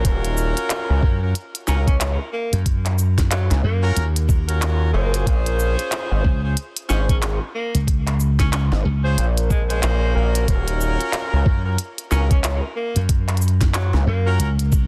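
Gritty and swaggering, this glitch hop excerpt at 92 BPM in Eb dorian rides swung 16ths over Ebm7, Bbm7 and back, with a thumpy, pitched-down electronic kick and a glitchy kit of tiny snare, clicky hats, handclaps and shaker under a nasal, overdriven sawtooth synth bass up front, joined at 1.0 s by a bright, punchy slap bass, while tight horn stabs with vibrato pump through sidechain and digital delay and a distant, roomy tenor saxophone carries the melody with light vibrato and its own echoing delay, all in a dry, dense and heavily limited modern mix.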